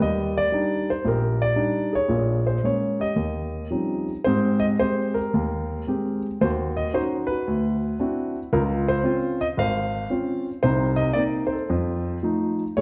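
Sophisticated and relaxed, this short passage from a longer solo jazz piece moves at 113 BPM in 4/4 with a swung, rubato feel, its grand piano sitting up front with an intimate, natural tone and audible action noise. The harmony opens in Eb major on Ebmaj7, Bbm7 and Eb13, then shifts to Ab major at 4.3 s, moving through Abmaj7, Ebm7, D9 and Dbmaj7 before settling on Cm7 and F7, with the piano ranging from Ab1 up to F5. A wet recital hall reverb with a 1.6-second decay surrounds the playing.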